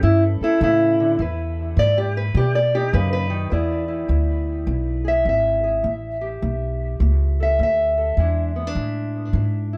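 A fingerpicked steel-string acoustic guitar with a boxy, parlour-style tone sits up front and carries the melody, touched with tape echo and soloing across the opening 3.5 seconds. This is laid-back, soulful acoustic country blues in E mixolydian, cut from a longer piece, moving at 103 BPM in 4/4 with a swung eighth-note feel and tuned to A4 = 442 Hz. An upright bass, plucked on gut strings with a woody, thumpy sound, is also up front and plays alongside the guitar through the whole 9.8 seconds. The harmony moves through A7, E and B before settling into a second passage at 3.5 seconds built on E7 and A7. The production is dark and intimate, with little reverb, giving the duo a close, dry presence.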